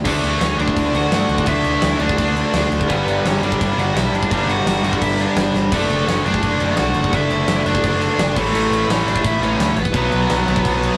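A straight 4/4 punk rock drive at 170 BPM opens this raw, urgent cut from a longer piece, with a big acoustic rock kit up front: punchy kick, fat snare and bright crash cymbals in a pumping studio room, plus a fill at 5.5 seconds. A growly, amped picked bass holds down the low end while three overdriven guitars play riffs over D, G, D/F#, A and B5: a bright one up front, a hollow-body semi-hollow sitting in the background, and a very quiet double-tracked crunchy part. Over them, a high-gain distorted lead guitar plays the melody, all set in light reverb with the rough, saturated character of a rehearsal-room recording.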